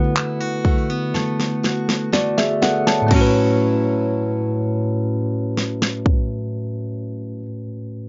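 A slow, straight 4/4 pulse at 61 BPM carries this short, tender contemporary R&B fragment in A major, cut from a longer piece. A bell-like tine electric piano sits up front with a clean, direct tone, playing the accompaniment across the full span and stopping at 8.1 seconds. A picked steel-string jumbo acoustic guitar adds full-bodied arpeggios with delay, dropping out at 7.5 seconds. A punchy, layered electronic pop kit enters at 0.2 seconds with kick, fat snare, handclaps and crash cymbal, and a drum fill runs until the harmony moves from D6 to A6. The romantic mood sits in a modest booth ambience, with the top end rolled off above 7.5 kHz.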